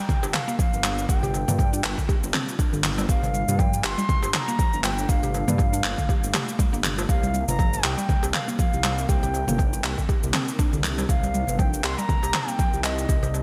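A bright, 1980s-style digital production sits in a lush hall ambience, giving this hypnotic, earthy afro house excerpt a polished sheen. At 120 BPM in 4/4 with a swung sixteenth feel, an overdriven, deep electronic kick sits up front beside a layered house kit of handclaps, shaker and toms, toughened by overdrive and gated reverb, while a crisp metal-shell darbuka struck with hard hands stays in the background. A dark, detuned saw bass rumbles beneath with sidechain pumping, and a woody, round mallet-like synth pluck spins arpeggios through chorus, phaser and delay. A very quiet, ethereal pad holds sustained chords with a slow attack and tremolo, moving from Gm7 to Cm7 at 7.1 seconds. Over the top, a close-miked bamboo bansuri carries the melody with vibrato and tongued notes, coloured by 12-bit sampler grit and delay.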